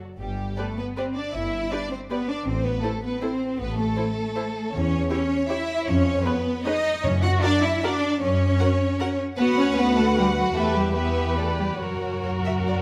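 A moderate scoring-stage reverb surrounds this bittersweet, dark orchestral ballroom waltz in 3/4, played with rubato and cut from a longer piece. Up front, a woody cello section and a lush double bass section with portamento carry the bass, while a focused viola section with a smooth top plays the accompaniment, one violin section plays a soft-attack second line, and another violin section carries the melody with vibrato and portamento. Timpani with calf heads and medium mallets sit in the background, sounding briefly at 7.0 s and playing a fill at 11.8 s as the harmony moves from G through C#7/E# to settle on F#.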